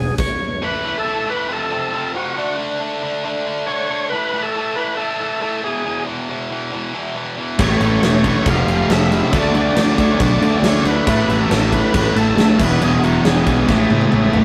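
A confident, sunny classic rock excerpt at 138 BPM, where a thick, gritty overdriven tonewheel organ through a slow rotary speaker carries the melody over a bright, picked distorted guitar riff from 0.6 seconds. At 7.6 seconds the full band arrives: a growling, overdriven fingered bass, a huge, roomy arena drum kit with a fat snare and punchy kick, a warm, crunchy overdriven guitar and a raw, double-tracked garage guitar doubling the riff in the background, and a very quiet, dark lead guitar with a parked wah adding a second line. The rough rehearsal-room sound has tube saturation and wet ambience, and a drum fill at 13.7 seconds closes the passage.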